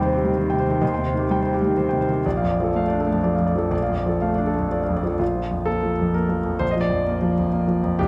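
A clear, intimate grand piano plays alone in a reflective, melancholic neoclassical minimalist excerpt in 3/4 at a rubato 120-130 BPM, moving from Cm/Eb through Bbmaj7 to a shift at 5.2 seconds that settles on Bb, its long sustain, audible action noise and tape echo captured up front by close, detailed microphones in light reverb.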